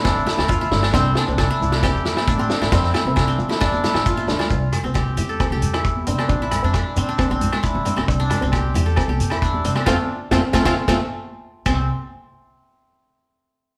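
A brisk, joyful highlife groove opens this excerpt at 134 BPM in 4/4, with the band playing together in one room and a moderate large-studio reverb around it. A bright, plectrum-plucked qanun sits up front with bright-edged triple-string arpeggios, while a fingerpicked old ladder-braced guitar supplies a dark, boxy accompaniment with the dull sheen of old strings. A pizzicato upright bass on gut strings gives a woody, thumpy low end, and a vintage kit drives the dance feel from up front with a tight kick, a medium-tuned snare, rim clicks, hi-hat and dark crash cymbals under a rolled-off top. Further back, agogo bells ring, a grainy, mellow shekere joins at 0.1 seconds, and high-tuned congas played with soft hands enter at 0.3 seconds. In C mixolydian, the harmony cycles through Bbadd9, C6 and F, and the full band hits a shared accent from 9.9 seconds before the chords drop away.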